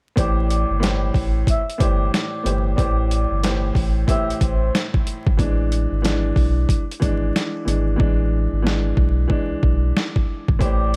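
Boom-bap hip-hop in A minor at 92 BPM, this moody, dark excerpt rides a swung 16th-note feel over an Am7 chord that later moves to E7. An overdriven, sampler-style drum kit sits up front, its compressed, pitched-down sound gritty with a thumpy kick and a medium-tuned snare, while a deep, round sine sub bass holds the low end with a fast attack and sustained, mellow notes. An upright piano supplies woody, vintage accompaniment with a smooth tone and short sustain, filtered at both ends of its range. A vibraphone played with soft mallets carries the melody, metallic and airy with a slow motor vibrato and a tape echo trailing its ringing notes, dropping out at 4.7 seconds and returning briefly at 10.6 seconds. The hi-hats fall silent from 8.0 seconds until 10.6 seconds, and the excerpt sounds dry under a layer of vinyl crackle.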